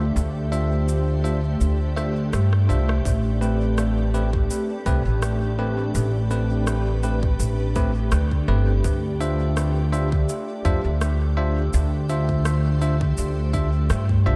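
Up front in the mix, a woody, bright pizzicato upright bass with tube saturation anchors this hazy, spacious ambient dub excerpt at 83 BPM in A minor, joined by a calm, organ-like pad holding sustained chords through ensemble chorus, bell-like electric piano stabs trailing dub echo, a barely audible breathy wind texture early on, electronic cabasa and rim clicks with dub echo, and a tight electronic kick that enters at 3.1 seconds after a drum fill, all moving from Dm9 to Am9 and back under a dreamy hall reverb.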